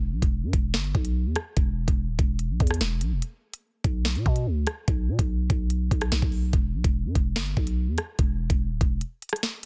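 Cold and menacing, this clip cut from a longer drill track moves at 145 BPM in a half-time feel, with an up-front growling 808-style bass whose buzzy, sine-based tone hits with a fast attack and then decays. The electronic drill kit sits just as far forward, pairing a knocking kick and sharp snare with crisp hi-hats and rim clicks. After a brief break at 3.2 seconds, the groove returns until the bass stops at 9.0 seconds, and the drums carry the last moments in a dry, dense, heavily limited modern mix.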